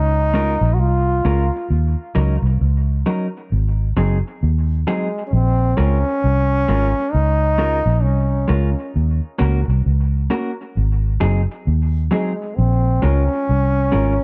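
Meditative and laid-back, this roots reggae excerpt moves at 66 BPM in Eb dorian with a gentle 16th-note swing, as a warm, lightly vibratoed solo trombone carries the melody through dub echo over a dark, round, foam-muted fingered bass sitting punchy and up front, while a mellow, clean, compressed electric guitar enters at 0.3 seconds to accompany with its own dub echo, all in a light reverb cycling through Db6, Ebm7, Ab7 and Bbm7.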